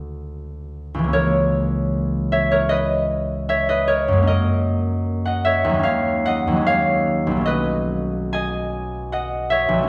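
A fingerpicked concert harp rings out alone in this mysterious, wistful classical excerpt, ranging from B1 to G#5 in C# dorian at a rubato 64-80 BPM in 4/4. It opens on Dmaj7 and moves by 1.1 seconds into a longer passage that drifts through C#m6, F#69, D#m11 and B9. A wet recital hall reverb places the listener further back in the room, letting the harp's warm acoustic tone bloom and linger.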